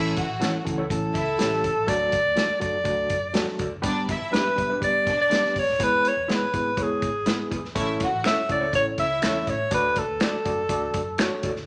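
Danceable and uplifting, this uptempo 1960s-style soul cut moves at 122 BPM in a straight 4/4 feel in D major, taken from a longer piece. An up-front alto saxophone carries the melody with a vibrato-rich, jazz-style tone, while a lush, bowed violin section supplies a smooth second line until about 9.4 seconds. Underneath, a gritty, reedy electric piano pushed through a combo amp pulses with fast tremolo, and a very quiet, slightly broken-up guitar through a small old amp adds lo-fi picked stabs. A dry, natural drum kit with a tight kick, medium-tuned snare and hi-hat drives the groove over a dark, round, foam-muted bass sitting in the background. Finger snaps appear at 8.2 seconds as the chords cycle through A, D, G and E, and a moderate large studio reverb gives the ensemble a roomy sheen.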